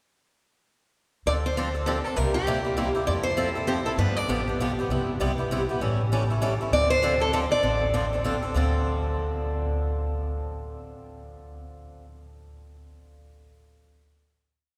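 Heard through a lush cathedral reverb with a long decay, this short, complete piece of acoustic string swing sounds as if it were captured in a church or concert hall. It moves at a brisk 198 BPM in 3/4 with a swung eighth-note feel in D minor, and its mood is swinging and virtuosic. A bright parlour-style steel-string guitar carries a motif-based melody of call phrases from 1.3 seconds, with fresh strings and audible finger squeak, then returns at 6.7 seconds. Up front, a boxy swing rhythm guitar picks chords on every beat, short and accented on two and three, through a progression that runs from Dm7 through C7, Fmaj7, G7, Cmaj7 and A7 back to Dm7. A woody, warm upright bass, also up front, plays pizzicato root-and-fifth lines with walk-ups. The piece closes on a final chord at 8.5 seconds.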